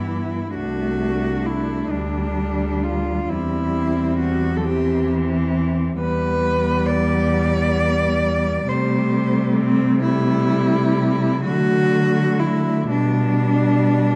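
The rhythm moves in 6/8 with uneven beats and a free, rubato pulse, which gives this tender, serene classical passage for cello ensemble an unhurried, breathing quality. Four bowed cellos, each played by a single musician, sound together for the full 14.2 seconds. Up front, a rich, smooth and even melody carries light vibrato, while a more distant second line, warm in tone, adds vibrato and portamento beneath it. An accompaniment cello with a soft attack brings its own vibrato and gliding portamento, and a bass cello grounds the low register with expressive vibrato and sliding notes. The harmony drifts through chords such as Em/G, D9/C, C/E and Am7/C before moving through D to G/B, all set in a moderate concert hall reverb with a dark production, in a passage cut from a longer piece.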